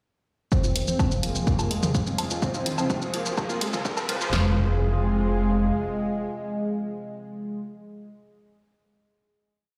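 A driving, hypnotic melodic techno piece in F minor at 126 BPM opens at 0.5 seconds with a punchy, tape-warm analog drum machine kick and snare up front, closed hats, shaker, mid tom and low woodblock, and a tight background arpeggio sequence, joined at 0.6 seconds by a round, deep rolling bass, all under a filter sweep that builds toward a riser entering at 2.1 seconds. Over this, a smooth, mellow supersaw riff and a lush, thick pad with chorus, phaser and vintage 12-bit sampler grit pump with the sidechain. The drums drop away near 4.4 seconds and the bass fades by 5.7 seconds, while the pad, supersaw and background impact effects ring out on a final F minor chord in a large, bare-room reverb.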